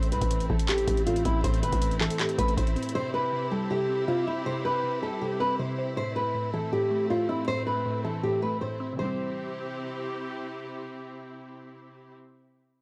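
A dry, gritty hardware recording with light reverb frames this triumphant, dreamy half-time trap and hip hop excerpt, where a bright, thumb-plucked nylon-string guitar with finger squeak leads up front over a glassy, crystalline wavetable pluck treated with chorus and phaser and a smooth symphonic string section holding sustained chords, while a booming, tape-warm analog drum machine of deep kick, metallic hi-hats and handclaps and a growling, buzzy 808-style bass open the piece and drop out by 2.9 seconds.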